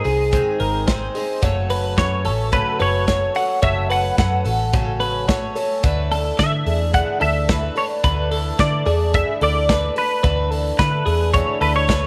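A light reverb gives this breezy, youthful slice of jangly indie pop a gentle sense of space, and it is cut from a longer piece. Up front, a semi-hollow electric guitar carries the melody with a clean, fingered, hollow-body tone, colored by analog chorus and slapback echo. A bright, twangy twelve-string electric guitar spins compressed arpeggios through spring reverb and its own slapback echo, while a picked twelve-string acoustic guitar fills the accompaniment with a woody, shimmering, octave-doubled sound from old strings. Also up front, a vintage muted electric bass sits dark and round, foam-muted and amped, beside an airy, polished studio drum kit with a punchy kick, medium-tuned snare and hi-hat. The harmony moves from G# to F#m at 1.4 seconds and settles on Dsus2 at 5.8 seconds.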